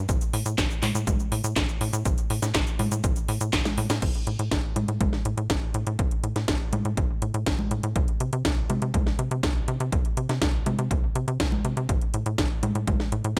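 The sound is up front, with a digital ambience around the parts, and this short excerpt is cut from a longer italo disco piece in A minor at 122 BPM in a straight 4/4. The mood is melodramatic and nostalgic, driven by a tight sequencer bass that starts at 0.0 seconds, a nasal, sawtooth and square-wave tone with a fast-attack filter pluck that decays, shaped by tube saturation. An electronic kick drum joins at 0.1 seconds, an analog, punchy thump with small room ambience, yet re-recorded in a large room. Alongside it a layered house drum kit brings a cracking snare, metallic hi-hats, handclaps, crash cymbal, cabasa and congas, all with a tape-warm, produced character. A drum fill from 3.7 to 4.0 seconds marks the move into the second section, where bass and drums carry on together to the close.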